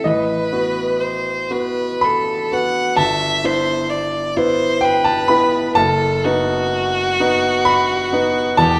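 This recording is set in a recital hall whose reverb lingers for about 1.4 seconds, lending a wet, resonant air to a short romantic classical passage for violin and grand piano. The mood is elegiac and solemn, moving in a slow 3/4 at around 64 BPM with a rubato feel that lets the phrases breathe. A single bowed violin carries the melody between F#4 and F#5, its tone rich and expressive, shaped by vibrato and portamento, and heard both up front and with a distant quality. A warm baby grand piano supplies the accompaniment across a broad span from E1 to B5, its natural sound sitting up front and slightly louder than the violin. Both instruments play throughout the 8.8 seconds, which are cut from a longer piece, as the harmony passes from B7/A to Em/G at 3.0 seconds and then to B7/F# at 5.8 seconds.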